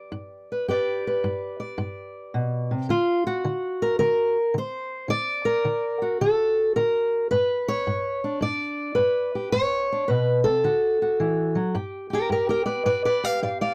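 The sound is dry and close, with a short, moderate booth ambience and the feel of a 1970s-style studio recording. This brief cut from a longer piece is acoustic country blues in G major at 108 BPM in 4/4, with a swung eighth-note feel and a soulful, gritty mood. A single fingerpicked steel-string acoustic guitar carries everything. Its tone is dark and sits up front, ranging from G2 up to F5, and it is tuned to A4 = 438 Hz. The harmony moves between G and D, settling back on G at 11.7 s, where the guitar takes a short solo passage that closes the cut at 13.7 s.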